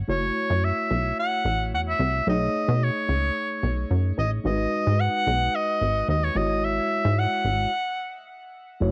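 A home cassette recording with light reverb and a small-room ambience captures a late-night, danceable early-eighties boogie funk excerpt at 110 BPM. A punchy, wave-folded analog bass with a filter pluck and fast attack sits up front, alongside a bright oboe playing a classical-style solo with light vibrato. A clean, mellow tine electric piano accompanies them over F#m7, B13, G#m7 and E69/G# until the stop at 7.7 seconds.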